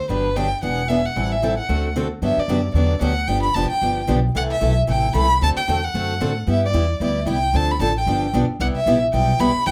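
A single bowed violin opens this lively, swinging passage of acoustic string swing in the jazz manouche style, cut from a longer piece, with vibrato, portamento and a soft attack giving its melody a close, expressive voice. Almost at once a picked steel-string acoustic guitar and an upright bass join, and the three parts stay up front together until 9.7 s. The guitar has a bright, boxy parlour tone with audible finger squeak, while the pizzicato bass on gut strings sounds woody, dark and thumpy beneath it. The harmony begins with a quick Gmaj7, E7, Am7, D7 turnaround, then at 2.2 s a new section moves from Gmaj7 through G7 to C6 and D7 before passing through Dm7 and G7 toward Cmaj7. A moderate club reverb places the trio in a club setting.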